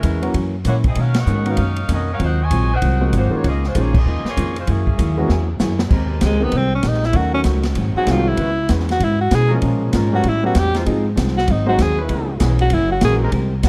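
A dark, dry production frames this energetic big band swing excerpt, where a bright, tight saxophone section with vintage vibrato carries the melody over a woody, growly upright bass up front, a punchy, polished drum kit, a grand piano with deep bass and a clean hollow-body archtop guitar in the background, until a drum fill at 5.3 seconds leads into an edgy alto saxophone solo with scooped notes from 6.3 seconds, backed by sustained chords from a trombone section.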